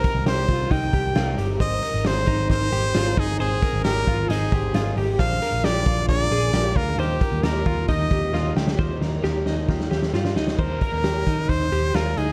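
A brilliant, up-front trumpet carries the melody in this breezy, nostalgic stretch of jangly indie pop, its forceful, close-miked tone shaded with vibrato, slapback echo and plate reverb. Beneath it, a twangy twelve-string electric guitar picks clean, compressed arpeggios through tremolo and plate reverb, while chorused retro synth keys sit glossy and detuned in the background until 10.6 seconds. A raw garage drum kit drives the straight 4/4 at 134 BPM with a punchy kick and a saturated, gritty sound from a stone room, and a foam-muted picked electric bass adds a round, dark low end from 0.1 seconds. In Eb major, the chords move from Cm7 through Abadd9 and Bb7 to Ebadd9, and a drum fill runs from 8.3 seconds into the next section. The production is dark and lightly reverberant, and the passage is cut from a longer piece.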